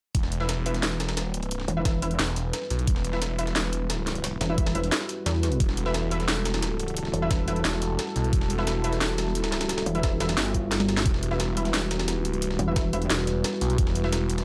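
A knocking, overdriven electronic kick drives this tense, mechanical excerpt of dark technical drum and bass at 176 BPM in E minor, alongside an up-front drum and bass kit with a cracking snare and bright hats, a gritty, pitched-up breakbeat sampler kit, a swirling phased detuned saw bass, a heavy pluck wobble bass that pulses in from 1.7 seconds, a moody analog pad holding an Emadd9 chord under sidechain pumping, and bold orchestra-hit-like synth stabs trailing tape echo, with a drum fill at 10.7 seconds in a light reverb.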